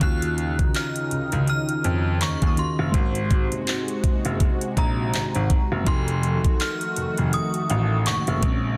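Contemporary R&B at 82 BPM in 4/4, this short excerpt carries a late-night, sensual mood, its sixteenths swung gently over a chord path from Ebm9 to Ab7 and then F7b9. A smooth electronic drum kit sits up front with a knocking kick, metallic hi-hats and handclaps, given a small-room character, while a clear, worn grand piano with long sustain takes the bass line low in the register. Beneath them, a dark FM electric piano layered with a soft pad supplies dreamy, full-bodied accompaniment in the background, treated with chorus and tremolo, and a thick, airy unison pad holds sustained chords through chorus and phaser. On top, a chiming, inharmonic synth voice carries the melody with a ringing, long release, treated with ensemble chorus and tape echo. A woody, round mallet-like pluck adds very quiet percussive texture from the start until 3.2 seconds and returns at 7.7 seconds, all within a dry, dense and heavily limited modern master.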